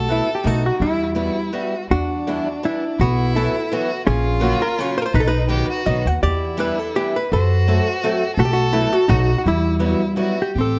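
Close, detailed microphones and light reverb frame this nostalgic, bittersweet musette waltz excerpt, which swings gently in three with a rubato lilt. Up front, a clean, compressed hollow-body jazz guitar carries the melody through tape echo over a woody, thumpy pizzicato upright bass on gut strings, while a rich, focused violin with vibrato bows a second line and a boxy old ladder-braced acoustic guitar picks the accompaniment. The harmony passes through Em7, Bsus4, F#dim and B7 before settling on Emadd9 at 9.5 seconds.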